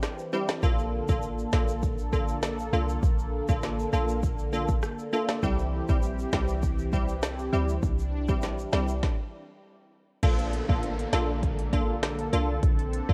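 A bouncy, straight 4/4 dancehall groove at 100 BPM rides on an up-front afro-pop drum kit with a deep kick, woody snare, crisp hats, rim clicks and crash, joined by compressed egg shaker and timbales until a stop at 9.0 seconds, in this summery excerpt cut from a longer piece. A clean, boomy 808-style sine bass sits beneath a bright, detuned wavetable chord stab with a filter sweep, which pumps together with a smooth sawtooth pad with chorus, moving between C and Bbmaj7. At 10.2 seconds a background downlifter ushers in a new section, all colored by a worn cassette warble with drifting pitch.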